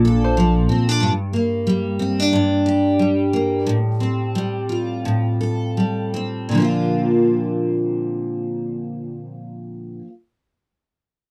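A dry, close recording with a 1970s studio character and light reverb opens on an easy-going, sunny piece of acoustic pop in Bb major, cut from a longer performance. Moving at 79-93 BPM in 4/4 with a gentle 16th-note swing, it slows down between 1.0 and 6.5 seconds. A clear upright piano touches a single very quiet melody note at the start, intimate and natural, with its action noise audible, while a woody pizzicato upright bass sounds one low note beneath it before both fall away within the first second. The double-tracked steel-string acoustic guitar carries the rest, bright, full-bodied and up front, picked across a range from G2 to A4 with finger squeaks audible, and continues until 10.1 seconds. The harmony moves from Bbmaj7 through Gm and Fadd9/A before settling on Bbadd9 at 6.5 seconds.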